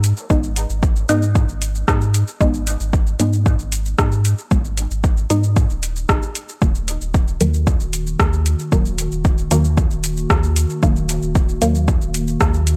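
A straight 4/4 pulse at 114 BPM drives this deep, hypnotic dub techno excerpt in Eb minor, tuned to A4 = 436 Hz, with an overdriven electronic kick sitting up front beside a deep house kit of metallic hi-hats, rim click and shaker, both parts carrying a large-room character. A clean, smooth sine sub bass pumps from the sidechain beneath muted, full-bodied sawtooth dub chord stabs that pluck through a filter sweep, phaser and dub echo as the harmony moves from Abm to Ebm at 6.6 seconds. At 7.4 seconds a warbling, nostalgic lo-fi pad of detuned square and triangle tones enters with a slow attack, chorus, its own reverb and sidechain pumping, while the overall mix stays dry.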